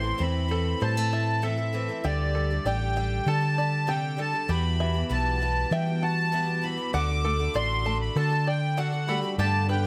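Uplifting and anthemic, this folk passage moves at 98 BPM in a straight 4/4, cut from a longer piece. A sweet, reedy accordion with light tremolo tuning carries the melody up front, ranging from D5 to D6 over a chord sequence of Am, Dsus4, Emadd9 and D. Beneath it, a fingerpicked steel-string acoustic guitar adds bright accompaniment, while a shimmering, octave-doubled twelve-string sits in the background alongside a plunky, twangy open-back banjo playing arpeggios through a digital delay. A round, dark hollow-body electric bass sits prominently in the mix, anchoring the low end. Near the close, a mellow French horn enters at 9.1 seconds with a second line, and a lush, very quiet string section adds sustained chords from 9.4 seconds, all set in a studio reverb.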